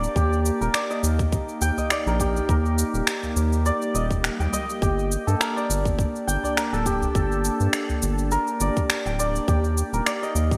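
Mystical and meditative, this excerpt of organic downtempo drifts over a lightly swung groove. A mellow, shimmering santur rings out arpeggios through digital delay above a warbling, nostalgic pad that pumps with sidechain, while a round, dark analog bass with tube saturation sits up front beside an electronic shaker and finger snaps bathed in gated reverb. A tight, tape-warm electronic kick enters at 0.2 seconds, a deep, band-limited udu plays from 1.8 to 8.0 seconds, and a faint electronic swell appears in the background at 4.0 seconds, all within a bright 1980s-style digital sheen as the chords move from Ebmaj7 to Gmadd9 and back.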